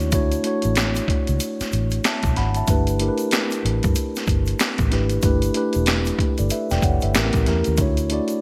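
A mellow tine electric piano, a dark, foam-muted fingered electric bass and a tube shaker with finger snaps open this relaxed, sensual neo-soul and R&B excerpt together, with a boom bap sampler-style drum kit joining at 0.1 seconds. The groove sits at 94 BPM in 4/4 with a 16th-note swing, and the harmony moves from Dmaj9 to G69, touching A7b9 before settling back on Dmaj9. The electric piano sits up front with a clean, direct voice, while the bass is round and punchy, dropping out at 8.2 seconds. The drums sound gritty and compressed, pairing a thumpy kick with a high-tuned snare and hi-hat, all up front and wrapped in gated reverb. The shaker and snaps stay in the background with an acoustic, live-room feel, and the whole mix carries light reverb and a bright 1980s-style digital production.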